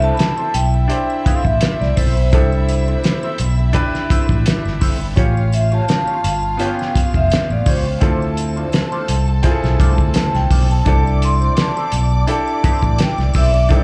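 A dark, ringing vibraphone with slow motor vibrato carries the melody in this romantic, smooth excerpt of lush 1970s-style soul at 84 BPM with a gentle sixteenth-note swing, over a bowed studio string section's soft second line, a clear, intimate baby grand piano with audible action noise, a mellow wah-tinged electric guitar riff in the background, a bright, growly fingered bass up front, a shimmering triangle, and a muffled, gritty, cloth-damped drum kit with a fat snare that enters at 0.2 seconds, all heard as a live club gig through the venue's PA with a rolled-off top end.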